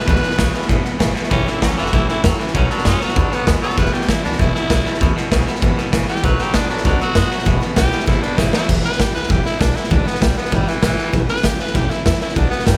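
A rowdy, rollicking rockabilly excerpt opens with a breathy, raspy tenor saxophone soloing with vibrato and tape echo over a saturated garage drum kit up front with a punchy kick, a twangy, clean electric guitar riff, and a bright dreadnought acoustic guitar picked in the background. An upright bass plucks woody, thumpy gut-string lines underneath, while the drums carry a gritty, pumping stone-room sound with a rolled-off top. A drum fill at 8.4 seconds leads into a repeat of the section, where the electric guitar drops out at 8.7 seconds as the sax keeps soloing, the whole mix sitting in light reverb.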